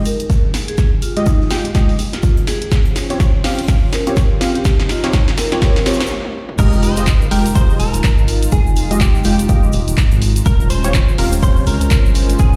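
A punchy electronic kick sits up front at 124 BPM in 4/4, with a 16th-note swing that gives this deep, moody deep house excerpt in F minor its easy sway, backed by a tape-saturated analog drum machine of snare, handclaps, hi-hat, toms and crash, plus a very quiet gated 80s kit adding airy hi-hat, shaker and a fat snare. A round, dark analog bass holds the low end throughout, pumping against the kick, while a warbling vintage pad in the background carries sustained Fm9 and Eb13 chords with 12-bit sampler grit and a filter sweep across the opening build-up. Mellow, detuned analog keys play chorused stabs from 1.2 seconds, and a ringing vibraphone with medium mallets and motor off offers a boxy melody through delay in the first half. After a drum fill and a brief stop, the drop lands at 6.6 seconds, where a clean, compressed direct-recorded electric guitar takes over the melody with ensemble chorus and delay, joined by a grainy, close egg shaker. 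The whole mix sounds as if played back on a big sound system in a bare room, steeped in a large studio reverb.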